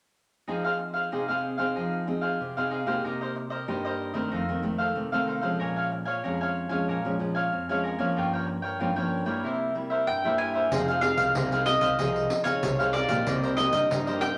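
Samba and choro in F minor at 94 BPM, this yearning, bittersweet passage cut from a longer piece opens at 0.5 seconds with a crisp picked cavaquinho and a full-bodied, fingerpicked nylon-string guitar with audible finger squeak, both up front, moving through Fm7, Cm7, F7, Bbm7, Gm7b5 and C7. A round, mellow mandolin with its doubled strings takes the melody at 10.1 seconds, and at 10.7 seconds a growly, overdriven fingered electric bass with a bright, amped tone enters alongside a jingly pandeiro played with hard hands. The recording sits in a wet, large studio reverb.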